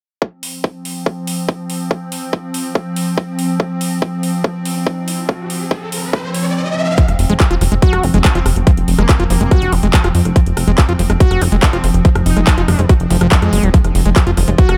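Psychedelic trance excerpt with a driving, psychedelic mood, opening on a tight, up-front electronic kick, a garage kit of handclaps, rim clicks and metallic hats, and an evolving, warbling wavetable pad holding sustained chords with chorus, reverb and sidechain pumping, before a riser from 4.7 s leads into a second section at 7.0 s where a punchy, funky analog bass, a squelchy, gritty acid riff with tape echo and, from 8.4 s, a background FM wobble bass with aggressive, metallic character join under light room reverb.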